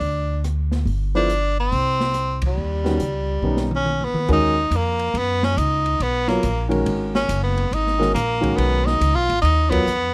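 A swung 4/4 pulse at 140 BPM drives this short modal jazz excerpt, intense and searching in mood. The open acoustic drum kit sits back in the mix with dark cymbals, a medium-tuned snare and a boomy kick, mixing ride, hi-hat, rim clicks, toms and crashes. Beneath it, a woody, thumpy upright bass with gut strings plays pizzicato up front, and a warm, polished grand piano joins at 1.1 seconds with short-sustained accompaniment over Gsus4 and Eb7b13 harmonies. The bright, present tenor saxophone carries the solo melody in a jazz style throughout. The band hits accents together, and a drum fill leads into a shift to G# dorian at 4.3 seconds, where the harmony settles on G#m9. Close, detailed microphones and very little reverb keep the sound dry and intimate.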